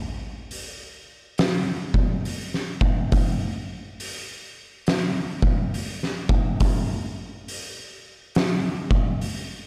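An oversized, low-tuned acoustic drum kit carries this brooding, ominous metal fragment, playing hi-hat, a punchy kick and a fat snare from 0.5 to 9.5 seconds with a swung eighth-note feel. The kit sits up front in a bright stone room, its sound dark, smooth, saturated and gritty with a rolled-off top. The dry production keeps reverb to a minimum and leans toward a dark, warm character.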